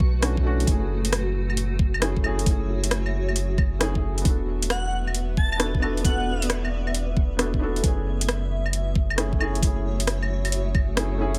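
This ghostly, wistful future garage excerpt opens with a soft, felt-muted upright piano, a cloudy granular pad, a deep, round sine sub bass and an overdriven, knocking electronic kick, all heard at once, with a garage kit of metallic hats, claves and rim clicks arriving a moment later on a swung sixteenth-note feel. The piano is mellow and intimate, with short-sustaining notes touched by tape echo. The blurred, evolving pad carries its own reverb, a moving notch and a gritty vintage 12-bit sampler character. Piano, pad and sub bass all pump against the sidechain over a slow progression of Bm7, F#m7 and E7sus4. The up-front kick sits loudest with its overdrive, while the overdriven garage kit and the bass sit at an equal level just beneath it. From 4.7 to 6.5 seconds an airy, bright, detuned sine lead with a noise layer drifts in on high notes, shimmering with chorus, phaser, vibrato and tape echo, before the kick drops out at 11.0 seconds in this otherwise dry mix.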